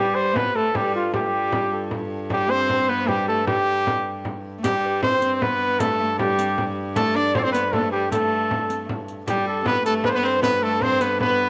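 A light reverb gives this short, festive medieval dance an open, rustic sound, with a solo trumpet standing up front and playing the melody in G mixolydian. The trumpet is clear and punchy, with light vibrato, scooped notes and a forceful, jazz-style delivery, all touched by a slapback echo. Beneath it, a warm, fingerpicked Celtic harp rings in the background on a second line, while a single bowed, fretted viola da gamba adds another lower line with a rich, biting, reedy gut-string tone. A second viola da gamba holds a close, airy G2 drone. The 3/4 pulse moves briskly at 155 BPM on a small, bright frame drum played with soft hands, and a dry riq with dark jingles joins at 4.6 seconds as the opening phrase repeats.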